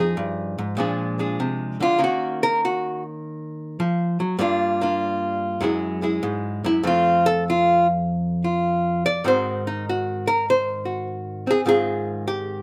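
Lightly reverberant, this relaxed, swinging solo jazz fragment from a longer piece features a lone archtop guitar, dark, clean and compressed with a hollow-body tone sitting up front, picking through a 4/4 swing feel over chords that move from Fm9 through Ebm7 and Gm7 to a closing Ab6 by 11.6 seconds.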